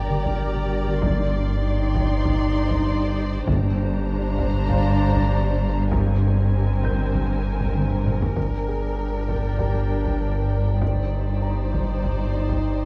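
An up-front sine sub bass drone on G1 anchors this mysterious, tense suspense film score cue at 98 BPM, beneath two veiled con sordino violin sections, muted viola, cello and double bass sections, a warbling lo-fi pad with chorus and phaser, a boxy grand piano with audible action noise, background taiko with a drum fill at 7.8 s, and hard-mallet timpani from 1.0 to 4.4 s, all set over Gm-centred chords in a moderate scoring-stage reverb with a dark, warm production.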